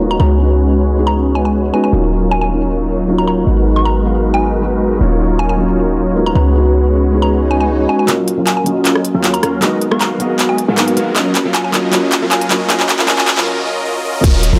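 Huge, detuned supersaw chords pump against a felt-muted upright piano and a deep, boomy 808-style bass in this emotional, dreamy half-time future bass excerpt, where a woody mallet-like pluck with chorus, phaser and dub echo carries the melody over Ebm9 and Abm9 harmony, a very quiet swell arrives at 7.4 seconds, a big-room drum kit with crisp hats enters at 8.1 seconds for a filter-swept build-up, and an overdriven, hard-clipped kick lands at 14.2 seconds.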